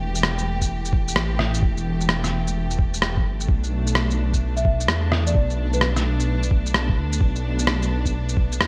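A dark, rumbling detuned saw bass pulses up front under distant, bowed symphonic strings that both pump to the sidechain, while muffled, tape-warm shaker and rim click with gated reverb and a thumpy, compressed kick set a swung future garage groove, and a woody soft-mallet marimba with delay drifts in from the background between 4.6 and 6.4 seconds in this rainy, melancholic excerpt with bright 1980s-style digital sheen.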